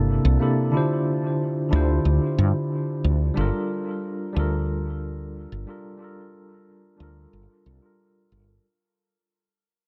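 A straight 4/4 pulse at 91 BPM sets an unhurried pace for this sunset chillout passage in G dorian, cut from a longer piece and carrying a warm, wistful mood. A round, dark fretless electric bass with a woody, hollow-body character sits up front, holding the low register between G1 and G2. Above it, a clean tine electric piano played through a combo amp carries the accompaniment from C3 to C5, colored by a medium tremolo, a low-pass filter and dub echo, with a filter sweep running across its part. The harmony moves from C13 to Dm11 at 0.7 seconds, then settles on Gm9 at 3.4 seconds. Light reverb and a small room ambience frame an echo-heavy mix, and the whole passage fades out over its roughly 8.6 seconds.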